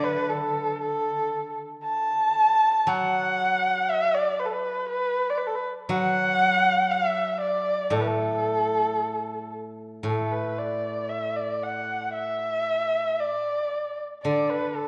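Drenched in the wet reverb of a concert hall, this festive yet graceful Chinese chamber piece in the A zhi mode moves in a free rubato at around 56-61 BPM in 2/4, with a dark, woody bowed erhu carrying the melody up front with vibrato and portamento while a fingerpicked steel-string zither rings out a silvery accompaniment in its low register beneath it, the music moving into a new section at 10.1 seconds.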